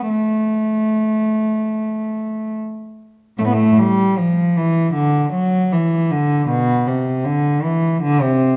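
Flowing and dance-like, this brief baroque-style suite movement in A minor, cut from a longer piece, unfolds at 72-79 BPM in a rubato 4/4 for a single bowed cello in period style, whose dark, reedy gut-string tone with light vibrato and a smooth top sits up front through close, detailed microphones in a moderate recital-hall reverb, ranging from A2 to B3 across its 8.6 seconds.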